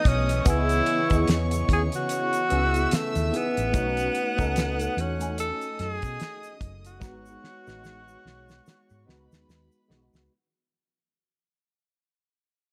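A breathy tenor saxophone carries the melody from the first moment, scooping into notes with vibrato and a jazz-inflected, punchy tone, set against a dark, reedy violin section bowing a second line with light vibrato and a period gut-string colour. Underneath, a worn, slightly out-of-tune tine electric piano plays mellow accompaniment through an ensemble chorus, while a swirling, phased string machine holds very quiet sawtooth chords that drop out of the texture at 3.7 seconds. This is lush 1970s-style soul at a relaxed 73 BPM in 4/4, with a swung sixteenth-note feel and a bittersweet, smooth mood. A round, hollow-body fingered electric bass and a damped, fat-snared 70s drum kit sit up front, joined by a grainy egg shaker tucked in the background. The harmony moves from C#m7 to B9 and then G#m7. A drum fill begins at 7.0 seconds, the saxophone drops out at 9.5 seconds, and the whole passage, cut from a longer piece, plays under a fade-out in a small room.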